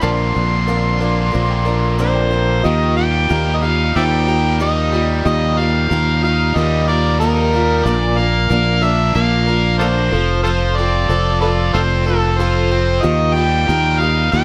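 A gritty, amplified harmonica leads this hopeful, open-road rock excerpt up front, its light vibrato and punchy tongue slaps carried by slapback echo and plate reverb. A round, direct bass sits prominently beneath a double-tracked, biting overdriven guitar riff, while a woody, boxy parlour acoustic with old strings and a reedy, clean electric piano with harmonic tremolo stay in the background. The piano adds a fill from 0.7 to 2.6 seconds before the music moves from Bbadd9 into a longer passage on Ebadd9, Bb and F, all in a lightly reverberant room.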